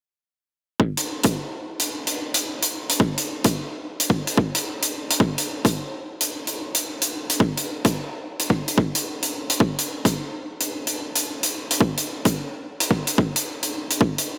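A swung sixteenth-note groove at 109 BPM in 4/4, pushed to 63% swing, drives this short glitch hop fragment cut from a longer piece. The electronic kick drum comes in at 0.8 seconds, a punchy, layered and produced sound placed up front, with a high-pass filter shaping its tone. At 1.0 seconds the hi-hat joins, carrying an acoustic character and a big-room quality while also sitting up front in the mix. The two drum parts make up the whole arrangement, and the mood comes across as funky and playful. The overall sound is dry, with little reverb, and the hi-hat rings on briefly to 14.3 seconds after the kick drops out.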